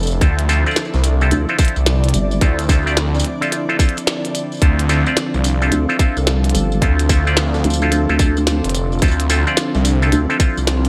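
A gritty, swaggering glitch hop cut from a longer piece, moving at 109 BPM in 4/4 with a 16th-note swing and resting on a Dm9 chord in D minor. A tight, layered electronic kick sits up front beside a swirling, detuned saw bass with phaser and overdrive, while a glitchy kit of clicky hats, tiny snare and tambourine carries gated reverb, and a nasal vowel-sweep wobble bass appears from 1.3 to 2.4 seconds and returns at 5.7 seconds. Hollow, overdriven auto-wah clav stabs with delay punch through, as a lo-fi, nostalgic tape-like pad with 12-bit sampler grit and an ethereal, airy pad pump in the background of a bright 1980s-style digital production.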